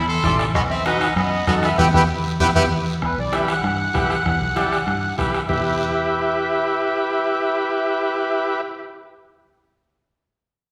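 A reedy, sweet accordion carries the melody through this passionate, fiery cumbia fragment, its light tremolo tuning giving the tune a vintage shimmer. Beneath it, a buzzy, overdriven combo organ sits up front with heavy vibrato, filling in the harmony from 0.2 seconds onward. A brilliant, forceful trumpet adds a punchy second line at a distance, heard only in the opening moments until 2.6 seconds, while a foam-muted fingered electric bass anchors the low end with a direct, amped tone. The percussion of a soft-beater bombo, thin-skinned congas tucked in the background, and a raspy, saturated guiro drives the groove before dropping away at 5.6 seconds. The band hits an accent together from 1.8 to 3.0 seconds as the harmony settles onto E minor, and the whole piece is bathed in the wet reverb of a church or concert hall, as if lifted from a longer performance.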